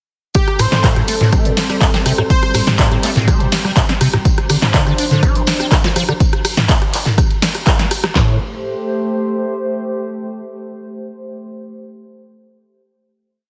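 Acid house at 123 BPM in A minor, driving and trippy, where two punchy analog drum machines up front pound a four-on-the-floor kick with claps, snare, hats, rim, ride and toms, a quieter tight metal drum kit adds a looped breakbeat with hi-hat, snare and tambourine in the background, a squelchy, resonant liquid acid bass with phaser and overdrive slides through its accented line, a warbly, nostalgic tape-like pad holds Am7 and Dm7 chords until a final chord at 8.2 seconds, and an airy, dreamy lead with gritty sampler echo drifts in brief phrases behind it all, everything carrying a heavily compressed radio sound with light reverb.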